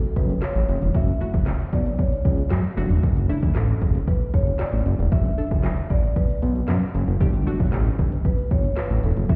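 Dance-pop with a confident, energetic drive, this excerpt pairs a layered deep house drum kit of handclaps, dark hats, woody snare and punchy kick with an up-front, fat, detuned sawtooth bass that pumps with sidechain compression from 0.2 seconds. A round, chorused analog pluck with a noisy edge joins at 0.9 seconds, and a mellow soft-mallet marimba with tape echo carries the melody over F#m7, D and Gsus2, all heard muffled as if through a wall into a stone room.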